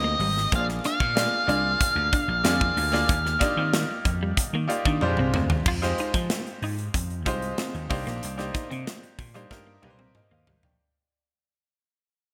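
A straight four-beat groove drives this slick, nocturnal slice of polished 1980s jazz-funk pop, cut from a longer piece, with the drum kit entering at 0.2 s. The kit sits up front with a punchy kick, a medium-tuned snare, bright cymbals and toms under gated reverb, and it plays fills near the middle and toward the end. A growly, amped vintage slap bass anchors the low end. A brilliant, natural grand piano with subtle chorus supplies the accompaniment, while a clean, compressed electric guitar picks a riff in the background. A dark, fuzzed-out octave lead guitar carries the melody up front with distortion and delay, then drops out at 5.0 s. Moving through jazzy extended chords, the excerpt fades out from 5.7 s within light small-room reverb and bright digital 1980s-style production.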